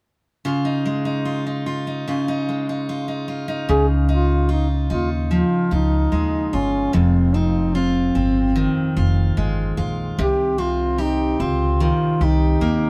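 A dark, close-miked duduk carries the melody in a folk style, its vibrato sitting up front from 3.7 seconds onward in this short pop fragment cut from a longer piece. Before it arrives, a picked steel-string dreadnought guitar plays alone from 0.4 seconds, its full-bodied accompaniment setting a carefree, sunny mood over a Dbadd9 chord in a straight 4/4. The upright bass enters with the duduk, plucked pizzicato with a woody, thumpy tone, its steel strings keeping it close and present. The harmony moves to Fm7 and then to Cm, and the three parts continue together until the fragment ends at 12.9 seconds. The trio sounds like a band playing live in one room, held in a moderate stone-room reverb with a 1.0-second decay.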